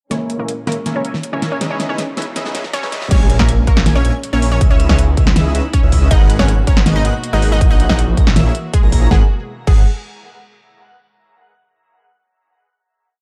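A dark, high-passed digital ambience frames this lush, bittersweet future bass piece in G# minor at 160 BPM in a half-time feel, where a bright, punchy unison pluck carries a repeating octave melody with sidechain pumping and delay over a soft felt-muted upright piano, intimate sul tasto chamber strings, a huge compressed supersaw riff in dotted-rhythm chords with cassette tape coloring and a filter sweep, and a pop drum kit with a fat snare and metallic hats, building through a drum fill and a very quiet riser until the drop at 3.1 seconds brings in a punchy electronic kick, a thick detuned saw bass with chorus, and an airy, dreamy arpeggiated lead with phaser and dub echo, before the piece settles on a final chord at 9.1 seconds.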